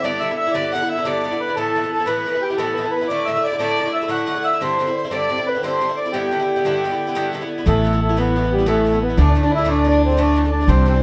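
A reedy, full accordion leads this rollicking Celtic slip jig, its close-miked, dry tone sitting up front as it carries the melody. Behind it, a single bowed fiddle with a dark, woody voice and light vibrato plays a second line from a more distant position. An Irish bouzouki picks the accompaniment on its double strings, giving the arrangement a metallic, acoustic edge beneath the two melodic parts. At 7.7 s an upright bass joins, played pizzicato on steel strings with a thumpy, prominent presence that adds weight to the lively 9/8 lilt. The harmony moves through G6, Asus2, Dsus2 and Cadd9 before circling back. The whole performance sits in a wet studio reverb, heard from further back in the room, and is cut from a longer piece.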